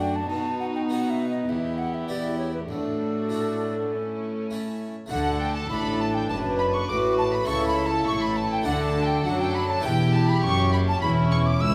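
A festive, lively baroque-style concerto movement in D major at 101 BPM opens with an airy wooden flute and a gut-string violin section sharing the melody over a second violin line, a brilliant, close-miked harpsichord, a viola section and a distant cello section, with a reedy double bass section joining at 5.1 seconds, all set in a wet recital hall reverb in this excerpt cut from a longer piece.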